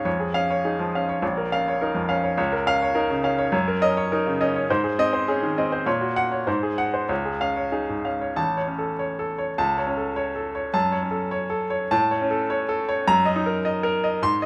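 In a rubato 2/4 at 103 BPM, this sparkling, brilliant classical piano study moves through Db major before shifting to A major at 8.4 s, in a short passage cut from a longer piece. A solo baby grand carries it all the way from 0.0 to 14.5 s, ranging from A1 to C6 with a clear, intimate, up-front tone, short sustain and audible action noise. The piano sits in a moderate large-studio reverb that gives the natural sound some air.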